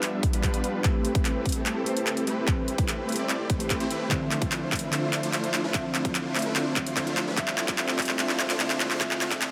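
A vast ambient reverb with a long tail bathes this high-passed future bass fragment, giving it a dreamy, bittersweet haze in a half-time feel. Huge, lush supersaw chords sit up front, bright and detuned, playing a riff that pumps against the sidechain and moves through a filter sweep with delay trailing behind. Beneath them, glassy digital keys add mellow, chorused accompaniment with a fast attack and decaying notes, while a very quiet, airy, breathy pad holds sustained chords with a slow attack and long release. The harmony moves from G7 to Am9 at 0.8 seconds and then to Dm9 at 4.1 seconds. An overdriven big-room dance kit with handclaps and hi-hat drives a build-up and drum fill, joined at 0.2 seconds by a punchy, layered electronic kick and a faint electronic riser.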